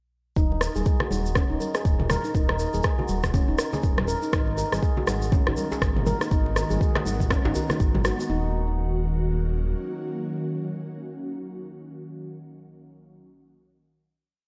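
Afro house with a driving, hypnotic pull, this short whole piece sets a swung groove in motion under a dreamy mix soaked in hall reverb and rounded off at the top. A deep, up-front electronic kick holds a four-on-the-floor pulse, while a programmed deep house kit adds hats, a backbeat, rim clicks and toms. Ringing congas interlock in the background, a grainy tube shaker plays hand-played sixteenths, and from 4.6 s a tight, cracking djembe adds a very quiet cross rhythm. A close-miked, bright handpan of nitrided steel repeats a meditative 16-step arpeggio with sharp finger strokes and delay, pumping against the kick alongside a smooth, mellow sawtooth bass that moves in a dotted rhythm with vibrato. At 5.6 s an ethereal, airy pad enters with ensemble chorus, phaser and its own reverb, also breathing with sidechain pumping, and it carries the final chord that rings out from 8.3 s.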